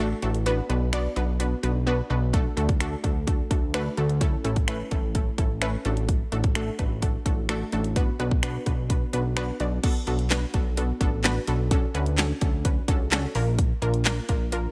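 Upbeat and carefree, this dance-pop excerpt at 128 BPM in D major sets a punchy, layered electronic pop drum kit of kick, fat snare, hi-hat, handclaps, finger snaps and crash over a thick, saturated analog bass and a lush, bright detuned unison pluck, both pumping with sidechain and sweeping through filters in a digital ambience, with a brief silent gap at 1.9 seconds before a second section from 9.8 seconds moves from Dmaj7 to a Bb chord.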